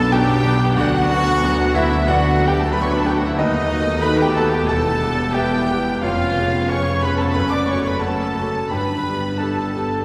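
Bathed in a wet concert-hall reverb, this passionate, brooding romantic excerpt for piano and orchestra in B minor moves with rubato at 91 BPM. A polished, up-front grand piano with audible action noise carries the melody alongside a violin section in the background. A second, expressive violin section, a clear oboe, an airy silver flute and a distant clarinet add second lines, while a lush viola section accompanies and a bright trumpet section adds stabs. A soft-attack tuba, a focused double bass section and a cello section hold the bass, and a mellow French horn section enters at 0.8 seconds with sustained chords.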